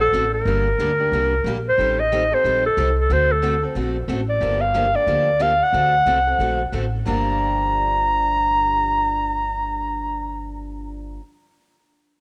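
A breathy clarinet and a pizzicato upright bass open this fiery, virtuosic slice of acoustic string swing in G minor, taken at a brisk 182 BPM with a lilting swung feel. The clarinet sits up front as the soloist, singing with vibrato and scooped notes over a smooth top, its tone carrying a faint cassette-tape haze. Beneath it, the bass gives a woody, thumpy pulse from its gut strings, low and dark in the mix. Two picked steel-string acoustic guitars supply the accompaniment, both with audible finger squeak and the same cassette coloring: one is dark and concert-sized, the other bright and boxy with fresh strings, tucked further in the background. The harmony moves from Gm through Am7b5 and D7 to Gm7, and the clarinet drops out at 10.5 seconds while the rhythm section carries on to the cut at 11.2 seconds. Light reverb and the homespun cassette recording give the whole fragment an intimate, lived-in sound.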